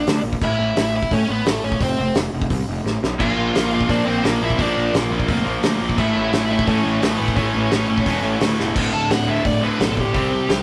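An up-front, distorted bluesy lead guitar opens this upbeat, rowdy punk rock excerpt at 173 BPM, joined almost at once by a growly fuzz bass and a loose acoustic drum kit with a fat snare, tight kick and dark cymbals. At 3.2 seconds, after a drum fill, three bright, overdriven rhythm guitars enter with riffs, two of them sitting in the background, one of those double-tracked, and the third very quiet, over chords moving through A, F5 and Bb. From 8.8 seconds the lead breaks into a solo over a D5 chord, all captured in a rough rehearsal-room recording with moderate small-room ambience.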